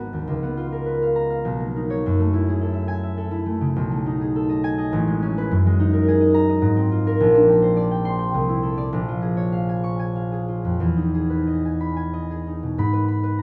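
Gentle and mysterious, this short excerpt from a longer classical piece features a solo concert harp in 3/4, moving with rubato freedom at around 90-108 BPM. The harp plays alone from 0.0 to 13.4 seconds, spanning a broad register from G#1 up to C#6, its thumb-plucked strings ringing out. Lush extended harmonies drift by, opening on C#13 and passing through colors such as Bmaj9, F#69 and A#m7 before settling on G#m at 12.8 seconds. Placed up front and captured with close, detailed microphones, the instrument carries a warm acoustic presence, framed by light reverb. The tuning sits slightly above standard, at A4 = 441 Hz.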